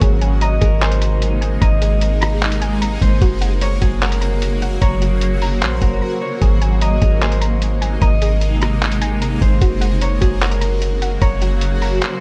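Floating and blissful, this half-time atmospheric cloud-rap fragment sets a ringing, fingerpicked concert harp melody with delay over a shimmering, ethereal pad bathed in chorus, reverb and phaser, while a soft, round pluck with chorus and delay arpeggiates in the background, a deep, dark 808-style bass sits up front, and a muffled, tape-warm lo-fi sampler kit of thumpy kick, handclaps, hi-hat and rim click carries 12-bit grit through a brief break at 6.0 seconds before the kick falls silent at 12.0 seconds.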